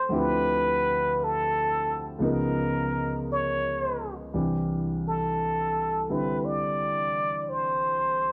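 Intimate and melancholic, this short jazz ballad moves at a slow 57 BPM in 4/4 with a lilting swing on the eighth notes. A trumpet with a plunger mute carries the melody throughout its 8.3 seconds, its muted, wah-wah voice shaped by light vibrato and a soft attack, sitting in the upper middle register between A4 and D5. Plate reverb lends the horn a roomy, somewhat distant quality even as it stays up front as the solo voice. Beneath it, a grand piano accompanies across a broad span from C2 to E5, its tone natural and close. The harmony moves from Dm11 to C#13 at 2.2 seconds and settles on C at 4.3 seconds. The production is dark and warm, set in a modest studio ambience that keeps the fragment feeling close and private.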